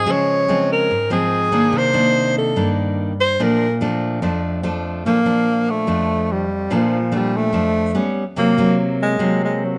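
A straight bossa nova rhythm in 4/4 carries this sunny, relaxed passage cut from a longer piece, where a close-miked, whispered alto saxophone plays the melody up front with breathy subtone, a soft attack, vibrato and scooped notes, soloing through the first 5.1 seconds, over a bright, full-bodied nylon-string guitar fingerpicked in classical style with audible finger squeak, both set in a moderate echo-chamber reverb.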